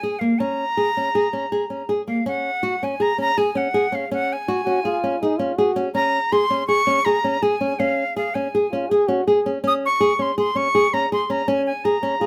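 A breathy, bright flute and a fingerpicked nylon-string guitar open together, the flute carrying the melody up front with vibrato and a tongued, reedy edge while the guitar spins classical-style arpeggios just as close beneath it. This is contemporary instrumental chamber music in an uneven 5/4 metre with a straight feel, restless and pensive in mood, and tuned slightly under standard pitch at A4 = 438 Hz. The harmony moves from Bbm7 to Ab7sus4 as the opening passage gives way to a longer second section at 2.3 seconds, later settling onto a Db5 chord. A clear French horn enters briefly at 4.7 seconds with a soft attack and light vibrato, then returns at 8.7 seconds to carry a second line in its middle register through to the end. Light reverb gives the small ensemble a gentle sense of space, and the passage is cut from a longer piece.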